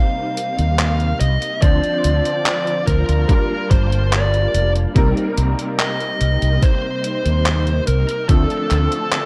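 A detuned 8-bit drum machine sets a straight 4/4 pulse of handclaps and hi-hat bathed in gated reverb from 0.4 s, joined at 0.6 s by a round, dark fretless bass with subtle chorus and at 1.6 s by a thumpy electronic kick sitting up front. Over a woozy, nostalgic vaporwave cycle of Cm7, Dm7 and Gm9, a vintage electric grand piano with clangy lows and ensemble chorus comps while a silky string machine pad sits in the background. A distorted, high-gain lead guitar carries the melody through tape echo, all heard through the soft haze of a cassette tape in a section cut from a longer piece.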